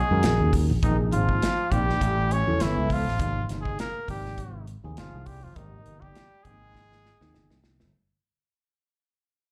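Funky and soaring, this short electric jazz fusion cut at 101 BPM with a light sixteenth-note swing sets a vibrato-laden trumpet melody up front over a clear, forceful trombone second line in the background, both touched with slapback echo, as a punchy fingered electric bass anchors the low end, a worn, slightly out-of-tune tine electric piano accompanies with overdrive, phaser and slapback echo through its built-in speakers, and an acoustic studio drum kit with a punchy kick and medium-tuned snare closes on a fill from 6.7 seconds, all heard as a live gig through the venue's PA in club reverb while the passage fades out across its chords from Bmaj9 to Abmaj9.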